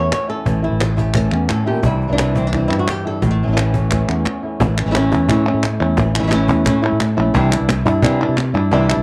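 A fingerpicked flamenco guitar carries the melody up front, its acoustic tone marked by audible finger squeak, in a dramatic, mournful flamenco piece at a brisk 175 BPM in 4/4 with a straight feel. A second acoustic flamenco guitar, also fingerpicked, plays stabs further back, its sound coloured by cassette tape. A growly, amped fretless electric bass sits up front beside the lead. A snappy cajon with snares sounds in the background with a live-room feel, and close, dry palmas hand claps add crisp accents. The harmony moves between A and Cadd9, a second section begins at 4.6 seconds, and a drum fill arrives at 8.7 seconds just before the clip, cut from a longer piece, ends. Moderate spring reverb and small-room ambience give the whole a warm, homemade cassette character.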